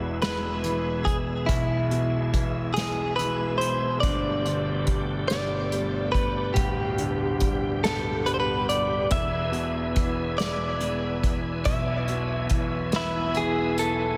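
A six-eight pop ballad, dramatic and aching, cut from a longer piece, with a clean, compressed electric guitar carrying the melody through a diffuse ambient delay over a polished grand piano whose deep bass, long sustain and audible action noise sit up front. A lightly overdriven tonewheel organ holds shouting, bright chords with key click, chorus vibrato and a slow rotary speaker, while an acoustic kit played with bundle sticks brings in a punchy kick, medium-tuned snare and hi-hat at 0.2 seconds. The harmony moves from E to Gadd9 at 4.0 seconds and back to E at 9.1, and a huge, dreamy reverb soaks the mix.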